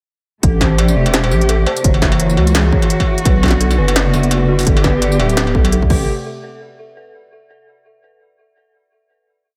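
This heavy, dark half-time drum and bass piece opens at 0.4 s straight into the drop, with every part arriving together. A deep, wobbling bass made of soft sine and triangle tones sits up front, sliding through long, gliding notes with a touch of chorus. Above it, a lush symphonic cello section holds bowed, vibrato-rich chords that pump against the beat, while an eerie, inharmonic FM bell repeats a six-step arpeggio loop that drifts against the bar, coloured by chorus, tremolo and delay. The swung, sparse beat pairs a heavy electronic kick with an industrial kit of clanging snare, crisp hi-hats, tambourine, struck metal and crash cymbal, all tape-saturated and re-recorded in a large room. The harmony moves from Am7 through F#7, Bm and G before returning to Am7, and at 6.1 s the parts fall away into a final hit under light reverb.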